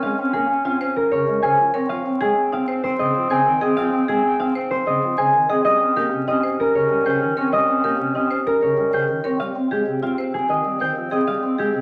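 Propulsive and hypnotic, this short cut from a longer piece of minimalist classical pattern music moves in a straight 6/4 pulse. A mellow, thumb-plucked concert harp carries the melody up front, its ringing tone sitting clearly ahead of the other parts. Beneath it, a distant, roomy clarinet traces a warm second line in a narrow register, while a soft chamber organ on flute stops supplies accompaniment with a touch of chiff. A marimba played with medium hard mallets on padauk bars adds woody, dark, percussive arpeggios with a smooth edge. The harmony moves from Bbm7 through Dbmaj7 and Eb7 to settle on Abmaj7 near 9.4 seconds, all heard within a wet large-studio reverb and a layer of vinyl crackle.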